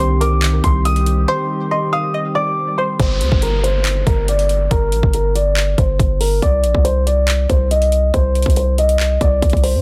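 Trap hip hop with a menacing half-time feel: a mellow grand piano with audible action noise carries the melody over a punchy, heavy 808-style bass and a trap drum kit with a hard-clipped kick, metallic hats and handclaps, while a twangy string-like resonator pluck, round electric-piano-like synth keys and a deep, detuned ambient pad sitting in the background fill out the opening until 3.0 seconds, when a downlifter enters within a dry, dense, heavily limited mix.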